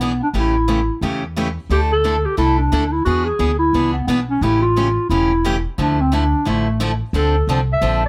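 Acoustic string swing in D minor at 176 BPM, this bittersweet, swinging excerpt features an up-front breathy clarinet with subtone and light vibrato carrying a mellow, vintage jazz melody touched by plate reverb, over a bright picked steel-string acoustic guitar and a growly, woody pizzicato upright bass, with chords moving from A7 through E7 to a closing Dm7 at 7.1 seconds.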